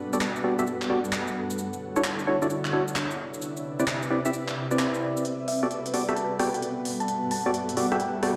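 This is a two-step UK garage groove at 131 BPM in 4/4, with a 65% swing on the sixteenths giving it a loping, skipping feel in G major, soulful and sunny in mood. The garage drum kit of cabasa, handclaps, hi-hat and rim click plays from 0.1 to 8.3 seconds, its crisp, filtered hats and tape-warm layers re-recorded in a large room. Up front, a hollow, percussive organ stab carries the chords through Gmaj9, Dmaj9 and Cmaj9, roughened by 12-bit sampler grit, subtle chorus and tape echo. Beneath it an airy, breathy pad holds sustained chords with chorus, while a granular cloud pad adds a blurred, detuned, evolving haze with its own reverb. At 5.2 seconds a build-up begins, and at 5.5 seconds a round, tine-like thumb-piano pluck enters with a warbling, vintage FM tone, chorus and tape echo, carrying the melody under a filter sweep. The whole short cut, taken from a longer piece, sits in a moderate plate reverb and sounds as if played over a big system in a bare stone room.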